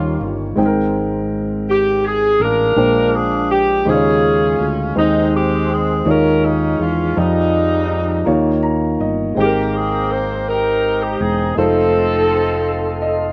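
A saxophone section with a warm, vintage vibrato carries the melody up front from the start, over a concert grand piano with deep bass and long sustain and a round, punchy fingered electric bass, in a hopeful, uplifting gospel passage in a straight 6/8 that is cut from a longer piece. The piano adds fills at 8.3 seconds and again near the close, while the chords move through rich ninths and suspensions. At 9.4 seconds a soft, flute-like tonewheel organ enters with sustained chords through a slow rotary speaker, all heard dry with little reverb.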